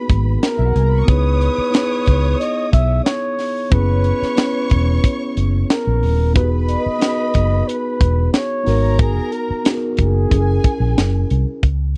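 A breathy, whispered flugelhorn melody with scooped notes opens this bittersweet, smooth 1970s-style soul excerpt at 91 BPM over bowed strings with expressive portamento and a mellow tine electric piano, as a dark, foam-muted fingered bass and a tight funk kit with a high-tuned snare sit up front in a dry, close small-room sound, moving through G#m9, C#m9, F#7sus4 and Emaj9, back to G#m9, before resting on F#9.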